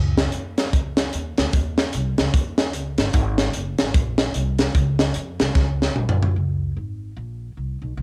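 Recorded at home on cassette with light reverb, this jubilant, soulful uptempo gospel excerpt swings in 4/4 as a woody, thumpy upright bass with gut strings plays plucked lines under a crisp fusion drum kit, up front with a punchy kick, high-tuned snare, hi-hat and toms in a small pumping room, closing with a drum fill at 5.6 seconds before the kit stops at 6.3 seconds and the bass carries on alone to 8.0 seconds.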